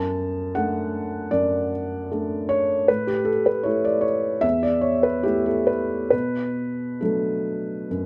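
A felt-muted upright piano plays alone from the first moment, its mellow, hushed tone sitting up front with the soft clicks of its action audible, in an intimate, hopeful neoclassical minimalist fragment in D major. The rubato pulse drifts between 66 and 81 BPM in 4/4, and the harmony moves from D/F# through A5 at 2.9 seconds to Bm7 at 6.1 seconds, spanning E2 to A5. A light reverb gives the close, natural sound a little air across this brief stretch of a longer piece.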